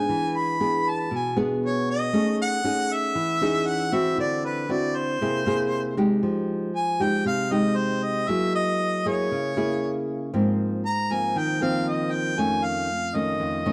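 Wistful and intimate, this bossa nova excerpt moves at 117 BPM in a straight 4/4, with a jazz-style harmonica carrying the melody over fingerpicked classical nylon-string guitar from start to finish. The harmonica has a soft attack, vibrato and a roomy, distant quality, while the acoustic guitar sits up front with audible finger squeak. The harmony drifts through extended chords such as E7 and Amaj7#11 before the second section settles into F minor at 6.2 s, all wrapped in a dark, warm production with moderate plate reverb.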